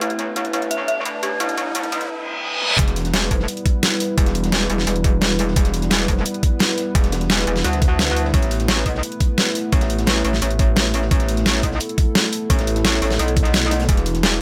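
A saturated, metallic wobble bass drives this aggressive, mechanical dark technical drum and bass excerpt at 173 BPM in E minor, where an eerie, inharmonic detuned synth bell plays arpeggios with delay until 1.8 seconds over a moody, wave-folded analog pad of sustained chords, a background riser and reverse cymbal build toward the drop at 2.8 seconds, and a knocking, overdriven electronic kick then joins an up-front dubstep kit of deep snare and bright hats, along with a very quiet, rolled-off breakbeat kit in a small room sitting beneath them all.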